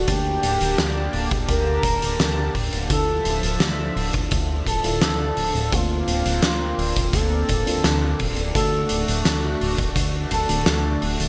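A smooth, vibrato-tinged synth lead carries the melody in this moody, nostalgic synthwave excerpt, its sawtooth-and-triangle tone dressed in lush chorus, cassette tape colour and digital delay. Beneath it sit a shimmering pulse-width pad that pumps with sidechain, soft FM electric piano stabs treated with chorus and phaser, and a glossy, dark chorused synth bass. From 0.1 seconds an oversized, low-tuned drum kit with a fat, up-front snare and hi-hat sounds through gated reverb alongside a gritty, saturated kick drum that stops at 10.5 seconds, while the chords move from Gmadd9/D through Dmadd9 and Bbadd9/D to D inside a bright 1980s-style digital production with light small-room ambience.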